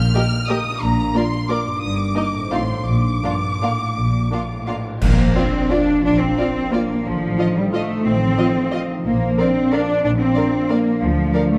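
A lilting three-beat sway with flexible, rubato timing drives this festive, sweeping orchestral ballroom waltz, cut from a longer piece. Bowed violins carry the melody high above the staff with lush vibrato, while a second violin line, both sounding distant and expressive, joins smooth, even violas that fill the middle in the background. Up front, the cellos have a focused, rich tone with a smooth top, anchored by a dark, close double bass section. A mellow concert harp rings out fingerpicked arpeggios spanning the low to upper-middle register throughout. At 2.9 s a cymbal swell with bright clash cymbals and concert bass drum joins, and the full ensemble lands a shared accent at 5.0 s as the opening phrase begins again. The moderate reverb of a scoring stage gives the whole a dark, cushioned glow.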